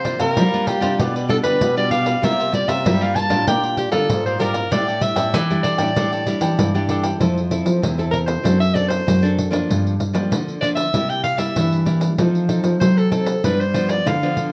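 A clear, punchy soprano saxophone carries the melody in a forceful jazz style, sitting up front as the solo voice yet sounding distant and roomy. Beneath it, this festive, playful cut from a longer samba and choro piece rests on two classical nylon-string guitars: one thumb-plucked on the bass line with fresh strings, the other fingerpicked for accompaniment, its finger squeaks audible. A crisp, picked cavaquinho adds acoustic warmth until 7.2 s, where the music moves into its second section and the harmony settles into a new home. A jingly pandeiro, played with soft hands and heard close and dry, keeps the straight four-beat pulse. The ensemble sits in a moderate studio reverb, and the chords turn through suspended and seventh colours that give the line a lively, searching lilt.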